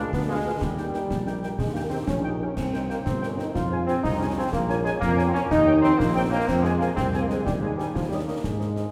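Heard from further back in a wet scoring-stage reverb, this proud, festive 6/8 military-style march for wind band moves at 123 BPM as mellow, distant trumpets carry the melody over a clear euphonium second line, softly vibrato-tinged French horns, present trombone chords up front, a dark, punchy tuba bass and close, dry snare, bass drum and dark clash cymbals entering at 0.1 seconds.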